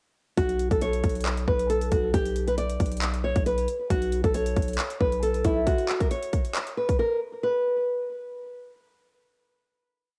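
A home-recorded cassette sound with digital ambience frames this short, eerie and melancholic trap piece in B minor, moving at 136 BPM with a half-time feel. A small, fingerpicked nylon-string guitar carries a looping melody, repeated like a sample and colored by tape echo. Beneath it, a heavy, aggressive, distorted 808-style bass holds long sub-bass notes that follow the kick until 5.7 seconds. An overdriven electronic drum kit with a hard-clipped kick, metallic hats, handclaps and fast hi-hat rolls drives a bouncy beat until 7.0 seconds. The guitar rings on alone and finishes at 8.7 seconds.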